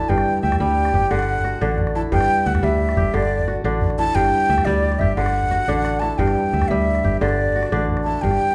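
Hypnotic and joyful, this brief cut from a longer West African traditional piece moves at 118 BPM in a straight 12/8, with an airy wooden flute carrying the vibrato-touched melody up front over bright, ringing fingerpicked kora arpeggios, a punchy, foam-muted fingered electric bass and a small calabash tucked in the background, all alternating between G5 and D/G in a moderate recital-hall reverb, with a drum fill from 5.5 to 6.2 seconds.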